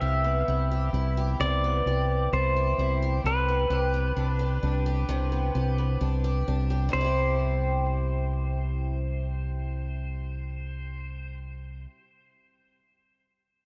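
Dream pop at a slow 65 BPM in C major, floating and ethereal, with a bright, clean pedal steel guitar carrying an up-front slide melody through tape echo, a shimmering, octave-doubled twelve-string acoustic picking arpeggios bathed in lush chorus and echo, and a round fingered electric bass sitting up front on C2 beneath Cmaj7, G/C and C chords, inside a dark, warm production with light reverb and studio ambience.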